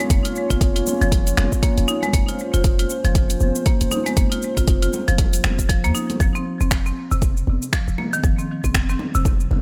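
An overdriven, up-front electronic kick drum anchors this driving afro house excerpt at 118 BPM, with a swung 16th-note feel, alongside a deep, boomy 808-style bass and a woody marimba struck with hard mallets whose arpeggios carry tape echo and sidechain pumping. An afro-pop kit of finger snaps, dark hi-hats and shaker sits in studio reverb, while distant congas stay in the background and a moody, nasal analog pad with chorus holds sustained chords over Bbm/F until 6.2 seconds. From there the pad drops out and the piece moves to an F5 chord for the final section, with the kick, bass, marimba and percussion carrying on.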